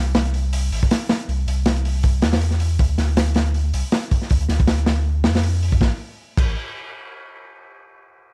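Drum and bass with a jungle edge, this short, frenetic and dark cut runs at 159 BPM in 4/4, its sixteenths carrying a light swing. A saturated sub bass opens the piece and holds the low end from the start until 6.6 seconds, its deep, thick tone sitting between A1 and F2 with a fast attack and sustained notes. A crunchy breakbeat drum kit joins almost at once, bringing crash cymbal, hi-hat, punchy kick and a medium-tuned snare. The kit sounds acoustic and close, as if caught in a small room, with dark cymbals, a smooth body and a rolled-off top end, and it sits up front. Little reverb and a dark, warm production shape the mix, and a brief new section arrives at 5.8 seconds before the cut ends.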